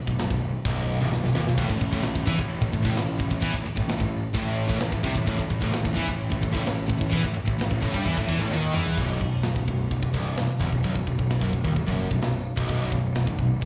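The tight metal drum kit sits up front in this dark, heavy metal excerpt at 130 BPM, its medium-tuned snare, tight kick and rolled-off top driving the riffs with china, crash, hi-hat and toms, plus fills just before 1.6 and 9.0 seconds. A growly, fuzzy picked bass grinds through the whole clip alongside two overdriven picked guitars in the background, one sludgy and dark, the other bright, while a double-tracked high-gain guitar with slapback echo joins from 1.6 to 9.0 seconds. The sound is that of a live club gig heard through the venue's PA, with small-room ambience and club reverb, and the music shifts into a new section at 9.0 seconds.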